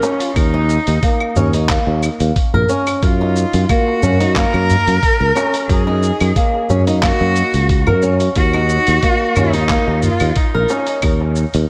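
Organic downtempo with a hypnotic, meditative mood, where a rich, bowed cello carries the expressive melody with vibrato and portamento through analog delay over fingerpicked flamenco guitar arpeggios touched with subtle chorus and delay, while a growly fretless electric bass and a thumpy, compressed electronic kick drum enter at 0.4 s beneath a gritty, tape-warm sampler-style kit of claves, handclaps, hi-hat and shaker, and a deep clay darbuka played with soft hands sits in the background, all bathed in a dreamy, lush hall reverb.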